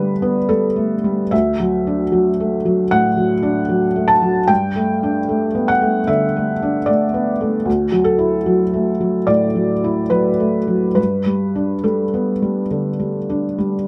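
Neoclassical minimalist piano in D major at 75 BPM with a loose, rubato 4/4 pulse, this hopeful and intimate passage from a longer piece is played by a solo felt-muted upright piano spanning D2 to A5, whose thick-felt, mellow tone and audible action noise sit up front in a dry, close and detailed recording as the harmony alternates between Gadd9 and Dadd9.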